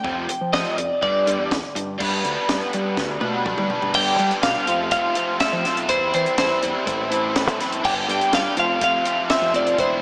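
This indie rock excerpt feels wistful yet upbeat, moving in a straight 4/4 pulse. A bright, compressed twelve-string electric guitar carries the melody in clean picked lines coated with lush chorus. Up front, a double-tracked overdriven electric guitar plays a picked riff colored by analog chorus. Underneath, a growling fingered electric bass adds its own overdrive, while a compact cocktail drum kit supplies a punchy kick, high-tuned snare, dark cymbals, hi-hat and toms with a dry acoustic character. A clean electric guitar solo fills the opening 2.0 seconds, and a drum fill at 3.0 seconds leads into a closing stretch that moves through Fmaj7, C/E, Am, G and F, all of it soaked in a plate reverb for a dreamy, small-speaker sound.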